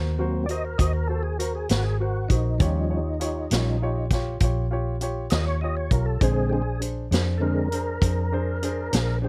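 A dry, close-sounding slice of a longer slow blues in 12/8 at 66 BPM, laid-back and swaggering in Eb mixolydian, in which a clear, lightly overdriven tonewheel organ with key click, chorus vibrato and a slow rotary speaker solos over Ab9, Eb9 and Bb9 chords, backed by a woody, polished upright piano with short sustain, a dark, round, foam-muted electric bass sitting up front, and a vintage drum kit with a punchy kick, medium-tuned snare, hi-hat and a rolled-off top.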